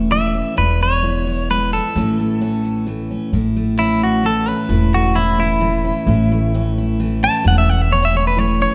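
A twangy, compressed clean electric guitar leads this short honky-tonk and classic country fragment, carrying the melody up front and stepping into a solo at 3.3 seconds that runs to the end. The tempo sits at 131 BPM in a straight 3/4 metre, in A major, and the mood is heartfelt and nostalgic. A picked steel-string dreadnought acoustic guitar supplies full-bodied accompaniment, with audible finger squeak. Underneath, a pizzicato upright bass on gut strings gives a woody, thumpy low end. The harmony moves from A to E and back to A within the first two seconds, and the whole group sits in a moderate recital hall reverb that lends an open, natural space to this excerpt cut from a longer piece.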